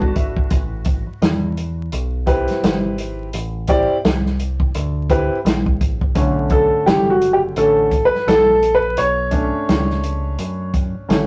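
A woody upright piano fill opens this mellow, smoky jazz-hop excerpt at 85 BPM with a lazy 16th-note swing, as a round, punchy picked electric bass and a dark, boomy-kicked acoustic jazz kit of hi-hat, kick and snare settle under Bm7 and Am9 chords, before the intimate, action-noisy piano takes a long-sustained solo over Bm9 from 6.2 seconds, all wrapped in a rough rehearsal-room sound with tube saturation, vinyl crackle and moderate reverb.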